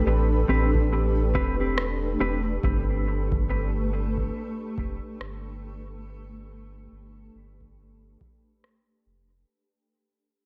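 Ambient dub at 70 BPM with swung sixteenths, meditative and spacious, moving from Am9 to Gadd9 at 2.6 seconds while the whole passage fades out as part of a longer piece. A cloudy, evolving granular pad and an airy, breathy wind-like tuned noise texture sit in reverb beneath a round, soft dub sub bass with tube saturation up front. A dark, clean electric guitar adds compressed stabs with dub echo from 0.5 to 2.4 seconds, a deep analog kick stays in the background, and a tape-warm, low-pass filtered rim click sits forward in a large room.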